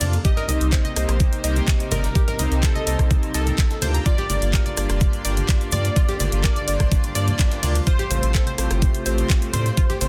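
Progressive house at 126 BPM in G minor, this dreamy, bittersweet excerpt moves over Cm7, Gm7 and Fadd9 as a punchy, detuned plucky unison lead carries the melody through lush chorus, tape echo and sidechain pumping, joined by a faint, crystalline wavetable pluck playing a second line in the same register. A round analog bass and an overdriven, knocking electronic kick sit up front, joined by an analog pluck playing arpeggios with dub echo, glossy chorused polysynth stabs and a dark chamber string section holding sustained chords in the background, all four of these parts pumping with the sidechain. The pop drum kit's handclaps, hi-hat and rim click, a gritty, barely audible sampler-style kit, a grainy cabasa, and soft-handed congas and woodblock fill out the groove, while a reversed, granular texture swells in at 4.7 seconds under light reverb and a dense, heavily limited master.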